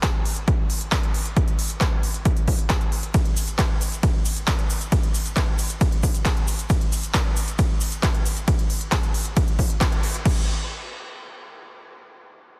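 A dense, heavily limited, dry mix opens this emotional, soaring trance passage at 135 BPM in a straight 4/4, cut from a longer piece and starting at the drop. An up-front, punchy, overdriven electronic kick drives it alongside a layered, big-room dance kit of crash and ride cymbals, handclaps and crisp hi-hats, both carrying a large-room character. A grainy, bright tube shaker sits close but in the background from 3.1 to 8.5 seconds, and a band accent hits at 9.8 seconds just before the drums stop at 10.3 seconds.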